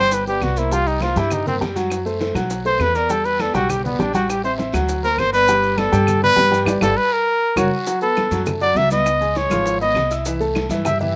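Dry with little reverb, this lively, sophisticated Afro-Cuban jazz excerpt moves at 201 BPM in a straight 4/4. An up-front trumpet takes a vibrato-laden solo with scooped notes throughout, over a warm baby grand piano with long sustain and a dark, thumpy pizzicato upright bass on gut strings. Behind them sit bright, compressed congas, round low-tuned bongos, woody vintage claves and a raspy distant guiro, joined by grainy maracas. A band accent from 6.7 to 7.9 seconds overlaps a drum fill that enters at 7.1 seconds and ends with it.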